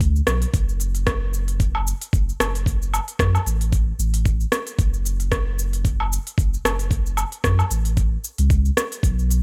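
Earthy and warm, this organic downtempo excerpt moves with a light swing on the sixteenths. A round, deep sine sub bass, spanning F#1 to F#2, sits up front with sidechain pumping. Beside it, a gritty, thumpy, overdriven electronic kick plays until 9.2 seconds, while an overdriven electronic kit of smooth hi-hats, rim click, shaker and woodblock, re-recorded in a small room, adds texture in a dry, close mix with little reverb.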